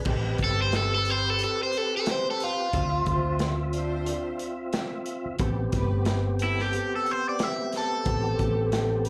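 An up-front, bright overdriven semi-hollow guitar carries a picked solo melody through this short, soulful and mournful soul blues excerpt at 90 BPM in A minor, coloured by phaser, plate reverb and slapback echo over an Am7, Dm7, Am7 progression. Beneath it, a round, dark hollow-body bass and a crunchy breakbeat kit with a tight kick, dark cymbals and a rolled-off top hold the straight-eighth groove, while a gritty tonewheel organ with percussive second-harmonic attack turns through a slow rotary speaker and chorus vibrato. A biting symphonic string section sustains chords in the background, all heard as a live gig through the venue's PA in a moderate club reverb.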